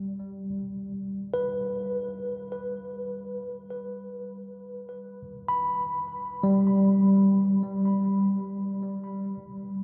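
A lone tine electric piano sounds from the very start, its clean, warm tone placed up front and colored by the character of its built-in speakers. This is serene, reflective ambient music in free time, drifting on a single G chord for the whole of its 9.8 seconds, a short fragment taken from a longer piece. The piano ranges from G3 up to B5, and a tape echo trails behind its notes. A huge, wet reverb with a 7.7-second decay surrounds the instrument, so each tone hangs in a vast, enveloping space. The effect is calm and unhurried, a moment of quiet contemplation suspended in time.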